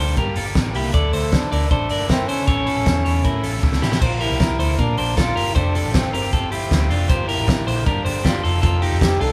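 A breathy, close-miked trombone carries the melody in this wistful, restless stretch of jangly indie pop, its soft attack and light vibrato giving the line a whispered, intimate quality. Beneath it, a bright, twangy electric guitar on the edge of break-up plays arpeggios, while a biting overdriven guitar fills out the accompaniment. A vintage muted bass, dark and round, anchors the low end, and a loose indie drum kit enters at 0.2 s, up front with a punchy kick, fat snare and dark cymbals in a pumping room sound. A drum fill at 3.6 s leads into a new section at 4.0 s, where the harmony moves from Gm, Dsus2 and A on to Bb, Fadd9, Gm7 and F7. Light reverb and the sense of a band playing live in one room tie the parts together in this excerpt from a longer piece.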